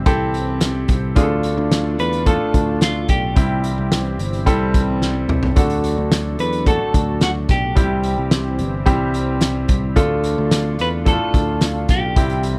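A dry recording with little reverb opens this hopeful piano-driven pop excerpt at 109 BPM in a straight 4/4, where an up-front concert grand piano with deep, polished bass carries the accompaniment through C, Dm and D chords. A clean, picked electric guitar plays the melody over a round, dark picked electric bass and a loose indie drum kit with a punchy kick, fat snare and pumping room sound, which rolls through a drum fill at 5.0 seconds. Underneath, a very quiet, lush sawtooth pad with detuned unison and chorus holds slow-swelling sustained chords.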